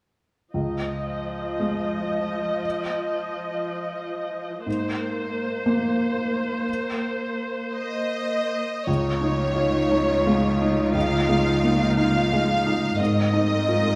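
A soft, intimate felt-muted upright piano with audible action noise opens this tender, uplifting cinematic excerpt in a rubato 6/8, joined almost at once by a smooth, even viola section; then a lush violin section with vibrato takes the melody up front at 7.7 s, and from 8.9 s a ringing concert harp plays arpeggios in the background over a focused cello section bass, inside a wet concert hall reverb.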